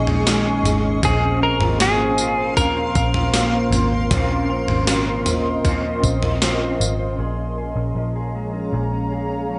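Bathed in a moderate concert-hall reverb with its highest frequencies trimmed, this haunting, hazy dream pop excerpt rests on a cloudy, evolving granular pad, a round, foam-muted picked bass and two dark, clean fingered electric guitars: one plays accompaniment through tremolo and ensemble chorus, while the other sits in the background with arpeggios through lush chorus and digital delay. An up-front, overdriven gated 80s drum machine adds a thumpy kick, a gated-reverb snare, tambourine and toms until 7.0 seconds. A compressed semi-hollow guitar carries a warm melody with digital delay from 1.0 to 6.4 seconds.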